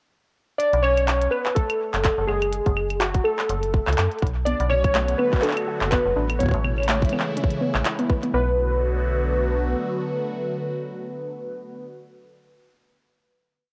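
Warbly lo-fi synth keys carry a free, wandering melody up front from 0.6 seconds, their nostalgic, detuned tone colored by chorus, cassette tape and tape echo, and they hold on into the final chord that rings out from 8.3 seconds. This is a glitchy, intricate IDM piece at 124 BPM in 4/4 with a light swing on the sixteenths, moving in B dorian through B5, F#m, Bm7 and Amaj7 before settling on Bm7. Underneath, a metallic FM bass plays a syncopated riff with a fast, decaying attack and tube saturation, while a tight electronic kick plays a broken pattern and a glitchy kit of claves, clicky closed hats and handclaps keeps shifting its beat. From 4.5 seconds a swirling, sawtooth-based analog pad adds bright sustained chords through phaser and chorus, and a soft, round pluck runs a repeating sixteen-step arpeggio in the background. The drums share the grit of a small-room re-recording on cassette, and the whole piece sits in light digital ambience with a homemade, tape-worn character.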